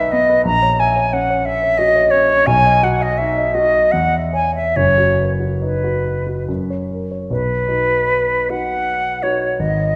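Classical romantic duo in B major, tender and unhurried in 3/4 at 68-90 BPM with a flexible rubato feel. The concert flute carries the melody up front with a pure, expressive tone, vibrato, soft attacks and rolled-off highs, while the dark concert grand piano accompanies with a mellow voice and deep bass. A lush scoring-stage reverb surrounds the pair, and a new section begins at 7.3 s as the harmony settles onto B.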